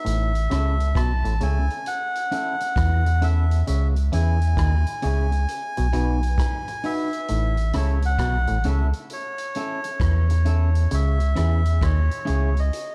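Uplifting and laid-back, this roots reggae excerpt moves at 66 BPM in a swung 4/4, with a reedy, breathy melodica carrying the melody through tape echo over chords moving from A to C#m to B and back. A deep, round sub bass sits up front beneath an auto-wah clav riff that sounds stringy and percussive, while a vintage drum kit with a punchy kick, hi-hat and rim click keeps time under a rolled-off top. An electric guitar at the edge of break-up enters at 0.5 seconds with compressed, picked accompaniment treated with spring reverb and tape echo, all within a dark production.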